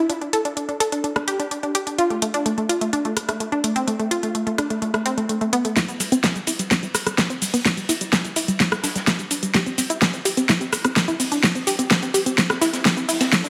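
A punchy, detuned sawtooth pluck opens this uplifting progressive house excerpt with up-front arpeggios that pump with sidechain and trail tape echo, while a forward deep house kit of cabasa, metallic hats, rim click and fat snare sits in studio reverb. At 5.8 s a build-up begins: a filter sweep runs over the pluck, a drum fill arrives, and a very quiet deep electronic kick joins a gritty, saturated garage kit of hi-hat, ride and snare that stays in the background with a rolled-off top. A lush hall reverb surrounds the hopeful mix.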